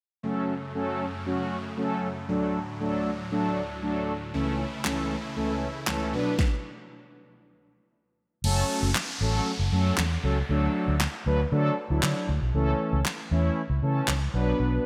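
Soft-edged synth brass carries this carefree, summery dance-pop fragment from start to finish, its round, brassy sawtooth tone thickened by chorus and sitting up front in a lush hall reverb. A huge, bright supersaw pad, detuned and phased with a pumping sidechain, holds sustained chords beneath it over an F#m, D, A/C#, Bm cycle until it drops out as a brief stop arrives at 6.4 seconds. A punchy, layered electronic pop kit of kick, fat snare, handclaps and crash enters at 4.8 seconds in a straight 4/4. When the second section arrives at 8.4 seconds, a dark, foam-muted vintage electric bass joins up front with its own sidechain pumping, and a descending downlifter effect sweeps underneath. The whole piece has a glossy, 1980s-style digital sheen.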